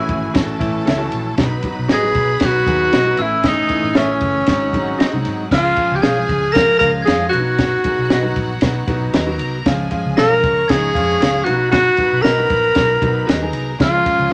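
A wet studio ambience with a short half-second tail surrounds this joyful, uptempo 1960s-style soul excerpt at 116 BPM in a straight 4/4. A breathy, whispered tenor saxophone sits up front with the melody, its intimate jazz-style phrasing marked by vibrato, scooped notes and a soft attack. Behind it, a clear, bowed violin section and a ringing, bell-like glockenspiel played with soft plastic mallets carry second lines in the background. A concert grand piano with deep bass gives accompaniment, while a slightly broken-up, lo-fi electric guitar through a small old amp adds picked, compressed stabs. A foam-muted fingered electric bass with a round, punchy tone and a compact cocktail kit, with its high-tuned snare, punchy kick and rolled-off top, drive the groove. A reedy, very quiet tonewheel organ with key click and rotary speaker holds sustained chords over the opening A, B and G#7 harmonies, falls away when the music settles into Db mixolydian at 5.5 seconds, alternating Db and Cb, and returns at 13.8 seconds.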